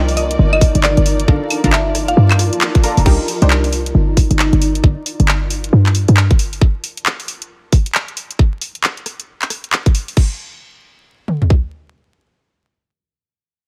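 Vinyl crackle and a light reverb frame this late-night, soulful UK garage excerpt, a two-step groove in C minor at 135 BPM with a swung 16th-note feel. It opens on a drop where a woody, FM mallet-like pluck carries the melody through chorus and digital delay, while a distant, bowed violin section holds vibrato-laced chords in the background, pumping against the beat. A tight, sine-based 808-style bass with a noise layer sits up front beside a granular cloud pad that blurs and evolves through its own reverb. Layered electronic drums drive the track: handclaps, hi-hat, rim clicks, claves and crash cymbal, plus a tight kick and toms that carry on until 11.6 seconds. A detuned sawtooth chord stab adds full-bodied punch through chorus, phaser and delay, and a filter sweep on it follows the band accent as the drop ends at 3.1 seconds. The harmony moves between Cm9 and Gm9 while the pad fades out, and the bass drops away at 6.6 seconds.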